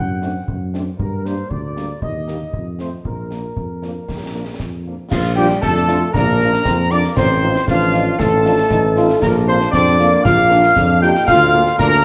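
Rousing and festive, this military-style march for wind band in 2/4 is cut from a longer piece. A dark trumpet section carries the melody up front from the start, over a mellow tuba bass with vibrato, while a French horn section with light vibrato adds punchy accompaniment in the background. Concert snare drum, concert bass drum and clash cymbals with a dusky cymbal tone sound as if in a small room. At 5.1 seconds a distant, roomy euphonium and a pure wooden piccolo with expressive vibrato and a soft attack join on a second line, and a trombone section enters at 5.6 seconds with sustained chords in the background. A wet scoring stage reverb surrounds the band, and a worn, warbling cassette tape character with pitch drift colours the whole recording.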